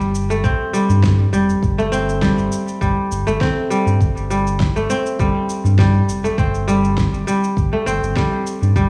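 A hazy cassette-tape sheen and light reverb frame this mystical organic downtempo excerpt at 101 BPM with a gently swung 4/4 feel, where a crisp, ringing fingerpicked kora plays arpeggios up front through analog delay, a round, dark analog bass with tube saturation holds the low end, an overdriven, fat-snared electronic shaker and snare kit sits back in the mix, a deep electronic kick joins at 0.4 seconds, and the harmony moves from an open, chordless start to a rootless F at 4.0 seconds.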